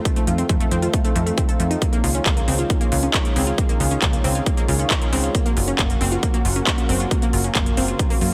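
Euphoric and driving, this uplifting trance excerpt at 136 BPM pairs a thick, detuned unison pad with a chorus-rich shimmer and a filter sweep, bright sawtooth pluck arpeggios trailed by tape echo, a funky, saturated analog bass entering at 0.3 seconds, crisp hats and handclaps from a big-room kit, and a punchy, up-front kick, with sidechain pumping on the pad, pluck and bass, all moving through F7, Dbadd9 and Gb in light reverb.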